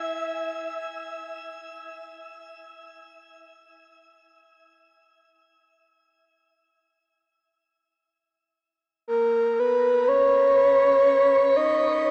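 A breathy, flute-like synth lead carries this serene, reflective ambient passage, cut from a longer piece and unfolding in free time. Its soft tone blends triangle and sine waves with a noise layer and a sub octave, shaped by a gentle attack, sustained notes and vibrato, and it sits up front between A#4 and E5. The lead sounds only briefly at the very start, then returns at 9.1 s and holds until 12.1 s, colored by chorus, a cassette-tape character and delay. A shimmering reverb with an 8.2-second tail gives the production a dark, warm, wet depth, and the tuning rests at A4 = 438 Hz.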